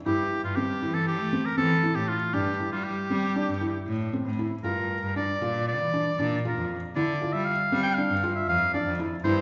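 Moving in a 9/8 that gives this contemporary chamber passage an urgent yet pensive air, a punchy solo oboe with vibrato carries the melody up front, while a dark, felt-muted upright piano, its action noise audible, plays intimate arpeggios over an earthy bowed cello bass line, all three sounding throughout as the harmony shifts from C/G to Gm7 at 4.6 seconds in a reverberant hall.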